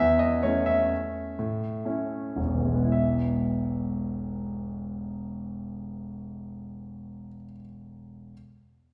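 A solo grand piano opens this short classical waltz, cut from a longer piece, with a smooth, vintage tone that sits up front. The music is in 3/4 and E major, its rubato tempo moving between 104 and 135 BPM. In the first 2.9 seconds the pace slows over an A/E chord, giving the phrase a playful, elegant lilt. At 2.9 seconds a new section settles onto E, and the piano spans a range from E1 to E5 before it stops at 8.3 seconds. A wet recital hall reverb with a 1.5-second decay gives the sound a sense of being heard from further back in the room. The instrument is tuned slightly low, to A4 = 437 Hz.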